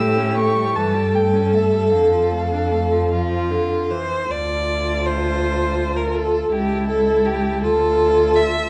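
Classical slow romantic string-quartet movement in D minor and a rubato 6/8 at 50-54 BPM, tender and warm, where a woody, dark-toned first violin sings the high melody softly over a rich, even second violin that sits up front, a focused, more distant viola accompaniment and an up-front cello bass, all four bowed by single players with vibrato and set in a wet stone room reverb as the harmony moves from A7 toward D minor.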